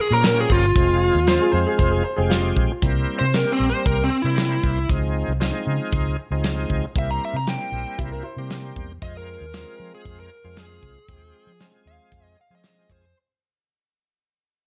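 A smooth, overdriven lead guitar with slapback echo carries the melody from the first moment of this smoky, mournful soul blues excerpt, played with a straight-eighth 4/4 feel over chords moving through Bbm, Fm, C7 and Dbmaj7. A shouting tonewheel organ with key click, chorus vibrato and a slow rotary speaker fills in behind, while a dark, foam-muted fingered electric bass and a small-room soul drum kit with a tight kick and a medium-tuned snare hold down the groove. A woody upright piano adds a brief second line at 1.3 s and again at 8.0 s, and the whole mix sits in light reverb as it fades out over its 13.2 seconds.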